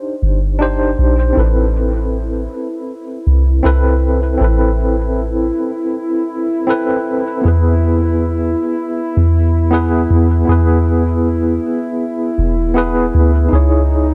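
Trip hop at 79 BPM in A harmonic minor with a lightly swung, hypnotic and dark feel, built on a clean, up-front tine electric piano through a combo amp with tremolo and tape echo, a deep, round 808-style bass with a fast attack and decaying notes, and a warbling, nostalgic, lo-fi tape-like pad that fades in at 1.9 s with chorus and reverb, over chords moving from Cmadd9 to Amadd9, E and C#madd9 in this brief fragment of a longer piece.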